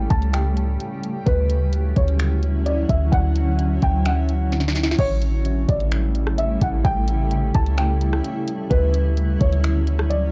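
Atmospheric cloud-rap hip hop with a dreamy, blissful mood, this excerpt from a longer piece moves in a relaxed half-time feel, drifting between A7 and Dmaj9 chords. A felt-muted upright piano carries the melody with a soft, boxy, intimate tone and an analog delay, while a granular cloud pad holds blurred, detuned chords that pump against the sidechain and bloom in its own reverb. In the background, a glassy texture of drifting overtones shimmers with chorus and reverb. Up front, a clean 808-style bass delivers deep, boomy notes with a fast attack, and a tape-warm smooth R&B drum kit of soft kick, sharp snare, warm hats, rim clicks, finger snaps and crash plays a fill at 4.5 s before the second section arrives at 5.0 s. The overall recording is dry and gritty, with a cassette-tape character.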